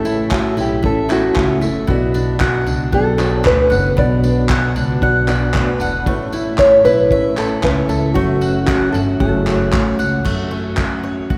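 Lightly swung sixteenths in 4/4 carry this wistful, reflective acoustic pop fragment, where a small, dark nylon-string guitar with audible finger squeak sings the melody until 10.0 seconds over a full-bodied fingerpicked jumbo steel-string guitar, a picked double-strung bowl-back mandolin's arpeggios, a reedy electric piano with fast tremolo sitting in the background, a woody pizzicato upright bass and a cloth-damped, thuddy, gritty drum kit of kick, handclaps, tambourine and crash, all bathed in a long, wet church reverb.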